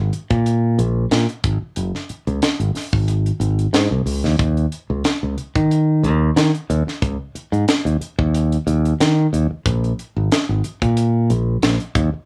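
A bright, growly fingered electric bass anchors this short electric jazz fusion passage, sitting up front with a direct, modern tone and ranging from Gb1 to Eb3. A tight funk drum kit of hi-hat, kick and snare plays alongside it from 0.1 seconds, with a high-tuned snare, a tight kick and a mid-forward, small-room acoustic character that also sits close to the listener. The mood is driving and funky at 91 BPM in 4/4, with a slight swing on the sixteenth notes and tuning set at A4 = 439 Hz. Both parts run together through a single section of about 12 seconds, the bass from 0.0 to 12.2 seconds and the drums stopping at 12.1. The overall sound is dry and immediate, with little reverb, and the clip is cut from a longer piece.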